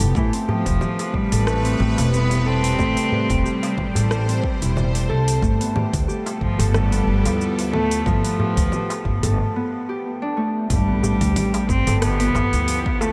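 Organic downtempo at 91 BPM with a light 16th-note swing and an earthy mood, built on a thumpy, woody pizzicato upright bass with sidechain pumping, ringing fingerpicked Celtic harp arpeggios carrying 12-bit sampler grit and tape echo, a reedy period-style bowed cello melody, a tense sawtooth string-like drone in the background with phaser and pumping, an overdriven deep electronic kick and a deep house kit of congas, metallic hats, rim click and shaker, and a crisp, very quiet metal-shell darbuka, all soaked in a huge dreamy reverb as Am9 moves to G9 at 5.4 seconds before a break at 9.4 seconds and a background impact at 10.7 seconds.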